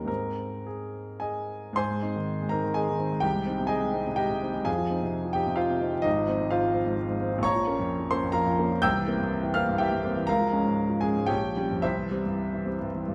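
Bathed in a wet recital-hall reverb, this brief cut from a longer romantic character piece presents a clear, intimate solo grand piano, up front with long sustain and audible action noise, drifting in rubato triple metre through brooding, bittersweet harmonies such as Fm7, Bbm and C7 across a span from Ab1 to G6.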